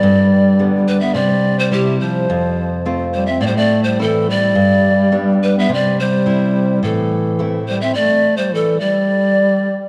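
A wet concert-hall reverb surrounds this short Andean folk excerpt, cut from a longer piece, and gives the up-front ensemble a long, spacious tail. Over a straight two-beat pulse, a bamboo pan flute carries the wistful melody with an airy, hollow straight tone, and each note begins with a crisp chiff. Beneath it, a mellow duduk sings a lower second line, and its folk-style vibrato adds an earthy ache. A fingerpicked nylon-string guitar gives classical-style accompaniment through a chord cycle of G, C, F and Am, then stops at 7.9 seconds. For the final stretch, the flute and duduk continue alone in the reverberant space.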